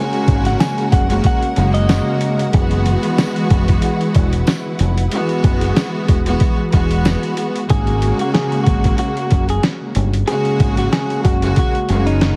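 A swung, sampler-style boom-bap kit sits up front, its gritty, pitched-down groove built on a thumpy kick, a medium-tuned snare and hi-hat with a tape-warmed, compressed punch. This dark, reflective hip-hop fragment is anchored by a deep, round dub bass, fingered and direct, while a rich, lush section of bowed strings carries the accompaniment close and smooth with vibrato. A softer string ensemble holds sustained chords in the background, joined by a faint, jingly tambourine; the tambourine drops out at 7.2 seconds, and the softer strings stop as the second section begins at 7.7 seconds. A clean, fingered electric guitar states the melody with a wavering, warbly pitch drift, drops out at 2.5 seconds, then returns at 7.7 seconds to lead the closing passage over suspended ninth chords. The whole track is coloured by heavy radio-style compression, vinyl crackle and a small room ambience.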